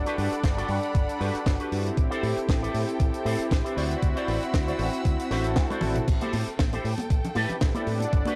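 A thumpy, sampler-style electronic kick and a tight funk kit with a high-tuned snare drive this sleek, groovy nu-disco excerpt at 117 BPM with a lightly swung 16th feel in A dorian, while a bright fingered bass with envelope filter, tube saturation and sidechain pumping holds the low end, a twangy, clean envelope-filtered guitar riff carries tape echo, a smooth, detuned analog pad warbles up front over Gmaj7, Am7 and D9 chords, a lush bowed violin section sits in the background, a drum fill arrives at 5.6 seconds and damped, hard-hand congas join at 6.1 seconds, all heard in dry, gritty small-room ambience.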